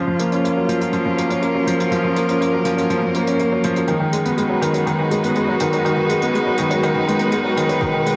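A straight 4/4 pulse at 122 BPM drives this luminous, hopeful piano-and-strings electronica build-up, cut from a longer piece, where a clear, worn baby grand piano riff with tape echo sits up front over veiled, con sordino string quartet chords that pump with sidechain, moving from F#maj7 to G#m7, while a brushed acoustic hi-hat enters at 0.2 seconds and a deep electronic kick drum lands only at 7.8 seconds, all set in a lush hall reverb.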